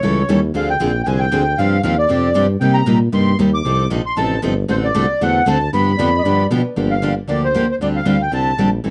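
Swinging and virtuosic, this short excerpt of acoustic string swing moves at a brisk 232 BPM in 4/4, with a reedy, sweet accordion carrying the melody up front over picked steel-string acoustic guitar accompaniment and a tuba bass with jazz vibrato. A breathy, whispered clarinet with subtone and scooped notes slips in briefly as a second line from 6.0 to 6.7 seconds, treated with analog delay, just before the passage shifts into a new section at 6.8 seconds. The production is dark and warm, set in a moderate studio reverb, with harmony running through chords such as A7, Dm7b5, G7sus4 and Cm7.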